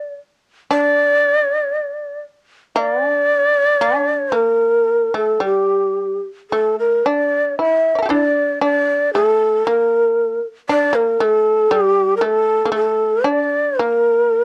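A worn, warbling old cassette recording in a small room frames this solitary, meditative fragment of Japanese chamber music in a free, rubato feel, where a breathy, mellow bamboo shakuhachi carries the melody up front with vibrato while a bright, buzzing shamisen plucks a quieter second line beneath it, the music shifting into a new section at 6.5 seconds.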